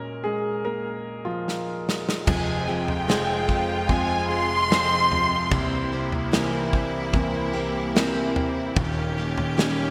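Pop ballad fragment, heartbroken and melancholic, in which a deep, long-sustaining concert grand piano plays alone until a punchy acoustic drum kit with gated reverb enters with a fill at 1.5 seconds, and from 2.3 seconds a dark, woody violin section with digital delay carries a second line up front over sustained chords from a bright, vibrato-rich symphonic string section and background arpeggios from a picked steel-string acoustic guitar with chorus and audible finger squeak, the whole mix glossed by a wet hall reverb and 1980s-style digital sheen.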